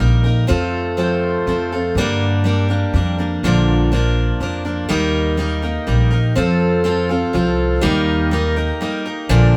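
Dusty and wistful, this short rock passage, cut from a longer piece, moves in a three-beat metre with a straight feel. A picked steel-string acoustic guitar sits up front with a bright, full-bodied dreadnought tone, carrying the accompaniment through the whole 9.6 seconds. Beside it, a woody pizzicato upright bass anchors the low end, also placed close to the listener. Quieter than both, a hand-pumped harmonium holds sustained chords with a reedy, nasal, breathing character in a boxy small room. The chords travel from F through G minor, B-flat and E-flat before returning to F, and a new section begins at 7.8 seconds on E-flat. Light reverb gives the sense of a band playing live together in one room.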